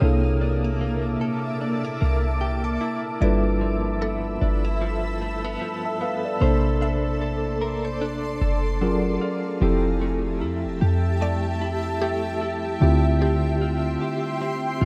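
Contemporary R&B with a smooth, romantic mood, this cut from a longer piece moves in a relaxed 4/4 with a gentle swing on the sixteenths. A mellow tine electric piano carries the accompaniment over a deep, boomy 808-style bass that sits up front with a clean sine tone, fast attack and dark decay. A bright, cloudy granular pad holds sustained chords that blur and evolve through its own reverb, while a direct-recorded clean electric guitar picks compressed arpeggios through tremolo and tape echo. At 3.2 s a woody, round mallet-like synth pluck enters in the background, its percussive FM tone shimmering with chorus and tape echo. The harmony drifts through lush extended chords from C13 and G13 to Bbmaj9, Gbmaj9, Fmaj9 and Dm11, all set in light reverb within a rough home demo mix.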